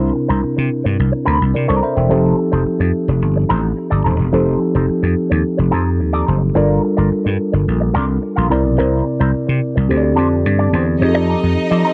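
A growly, punchy vintage slap bass sits up front in this sultry, danceable disco excerpt, moving in straight 4/4 at 108 BPM with a bright, amped edge. A mellow tine electric piano, clean and direct, shares the front of the mix and fills out the accompaniment across the whole clip. Beneath it, an electric guitar through an envelope filter adds a dark, compressed wah color to the groove in a quieter supporting role. The harmony moves from C7 to F7, then through Gm7, back to C7 and onto D7sus4 before landing on F7 at 11.0 s. At that same point, a lush studio string section enters with bowed vibrato and a smooth top, just as this cut from a longer piece ends. The sound is a dry, close 1970s-style studio recording with a touch of digital ambience, tuned to A4 = 441 Hz.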